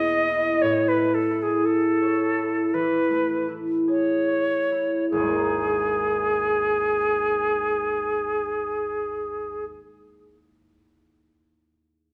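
Impressionist classical duo for silver concert flute and concert harp, hazy and mysterious, moving with a rubato feel that slows down through the opening 5.1 seconds. The flute carries a pure, tongued melody with vibrato, set up front over the harp's ringing, fingerpicked accompaniment, which drifts from Emaj7#11 and Amaj7 chords to a G#sus2 as the second section begins. A moderate recital hall reverb surrounds this short passage, taken from a longer piece.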